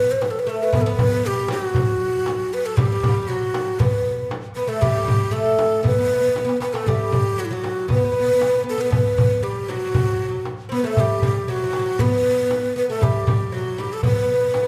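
A breathy, hollow ney carries the melody up front in this longing, melancholic Arabic maqam ensemble piece, its end-blown reed cane tone mellow and straight with a soft attack and lifted highs, ranging from E4 to C5+28c. Beneath it a woody, plectrum-plucked fretless oud with double strings plays a second line between F#3 and C4+25c, both instruments sounding from the very start. At 0.2 seconds the percussion enters: a crisp, close and dry metal-shell darbuka struck with hard hands, and a compressed, saturated frame drum sitting in the background. The groove moves at a straight 117 BPM in 4/4, tuned to A4 = 441 Hz, with a brief drum fill at 6.4 seconds. The ensemble sits in a resonant recital hall of a church or concert hall with a 1.7-second reverb tail, and the clip is cut from a longer piece.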